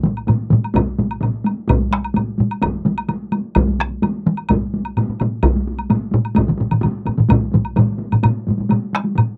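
Layered taiko ensembles struck with hard and heavy sticks drive this powerful Japanese traditional drum excerpt in a straight 4/4, most of them up front and one set further back, while a woody woodblock joins at 0.2 s, heard through a dry, close 1970s-style studio recording with a short booth ambience, and one taiko part drops out at 8.2 s as a brief new section begins.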